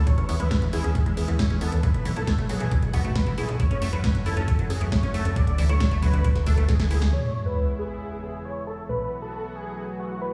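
Soaring and bittersweet, this uplifting trance excerpt moves at 136 BPM in a straight 4/4, with a huge, detuned supersaw lead carrying the melody through phaser, tape echo and a low-pass filter, over a lush, warbling pad held in the background and a tight, driving sequencer bass, all pumping with sidechain. A squelchy, resonant acid bass plays arpeggios under a filter sweep, while a punchy, tape-warm electronic kick and a layered dance kit with metallic hats push ahead until a drum fill at 6.5 seconds. By 7.1 seconds the drums and acid bass drop away as a sub drop lands, leaving the lead, pad and bass ringing through stone room reverb on chords moving from E6 to B7sus4.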